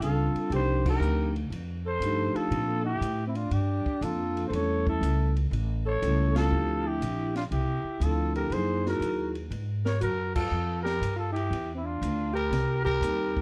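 A dark production with light reverb frames this relaxed, swinging small-group jazz passage, cut from a longer piece and punctuated by several band accents. A raspy, growling trumpet with scooped notes and vibrato carries the melody from a distant, roomy position, while a breathy, close-miked alto saxophone in subtone plays a second line beneath it. Woody pizzicato upright bass sits up front, a compact cocktail kit with a high-tuned snare, punchy kick and rolled-off top keeps time, and a ringing, metallic vibraphone, motor off, comps until 9.3 seconds and returns at 13.0 seconds.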